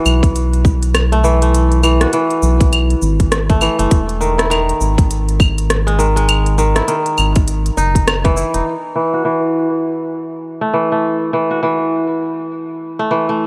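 A ringing, fingerpicked kora opens this mystical, meditative organic downtempo excerpt, its arpeggios passing through a low-pass filter and digital delay over F#m7 and Emaj9 chords. A round, dark analog bass with sidechain pumping joins a tight, overdriven electronic kick and an electronic kit of claves, crisp hi-hats, rim click and shaker, all moving in a swung sixteenth-note feel. Bass and drums fall away by 8.6 seconds, leaving the kora alone under a filter sweep from 8.7 seconds until the cut at 13.5, all set in light reverb and digital ambience.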